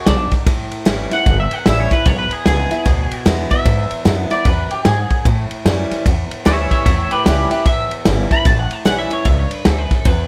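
Rockabilly with a retro, rollicking swing, cut from a longer piece, built on a clean, twangy electric guitar solo that carries the melody throughout, its bright picked tone coloured by analog chorus and tape echo. Underneath, a boxy parlour-style steel-string acoustic guitar picks a fresh-sounding accompaniment and a woody pizzicato upright bass anchors the A7 and E7 changes. An up-front vintage kit with a punchy kick, medium-tuned snare and dark, rolled-off ride sits in a studio room under light reverb.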